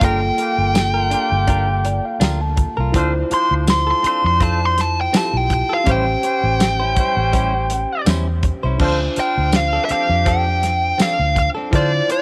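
Straight-eighth soul blues in D minor at 82 BPM, this mournful, soulful passage, cut from a longer piece, centres on a dark, smooth overdriven lead guitar that solos up front until 8.8 seconds, with a mellow tine electric piano slipping in a fill between 1.5 and 2.9 seconds over chords moving from Gm7 to Dm7 and A7#9. A clear, punchy horn section holds sustained chords while a bright, compressed clean electric guitar adds stabs through tape echo, and a round, foam-muted fingered bass sits forward beside a dry soul drum kit with dark cymbals, tight kick, snare, hi-hat, crash and tambourine. Light reverb gives the whole a small-room feel, tuned slightly flat to A4 = 435 Hz.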